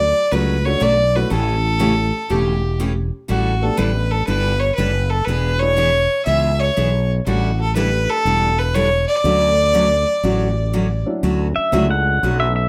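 A clear, earthy fiddle carries the melody up front with light vibrato in this swinging, down-home slice of country western swing, cut from a longer piece and set at 121 BPM in D major with swung eighths. Beneath it, a growly fretless electric bass sits direct and amped in the mix, while a bright, full-bodied dreadnought acoustic guitar is picked with audible finger squeak. A dark, woody upright piano, slightly detuned and boxy, fills in from the background. The harmony moves through jazzy colours such as Dmaj7, A9sus4 and E7 before returning home. After the fiddle drops out at 11.0 seconds, a clean, compressed pedal steel guitar enters at 11.6 seconds for a brief solo, played with fingerpicks, slide and volume swells. A moderate club reverb gives the whole band an intimate, roomy feel.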